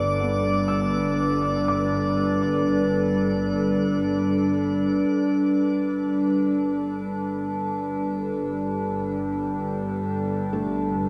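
In free time and G major, this serene, weightless ambient excerpt opens on a Gadd9 chord, with a warbling, nostalgic tape-like pad holding sustained chords up front while a soft felt-muted upright piano fades back behind its dark arpeggios, a drifting glassy harmonics texture floats above until 5.1 seconds, a bright, biting bowed double bass section fades in on a low G, and a mellow evolving analog drone joins at 8.6 seconds, all soaked in a lush hall reverb with a lo-fi cassette haze.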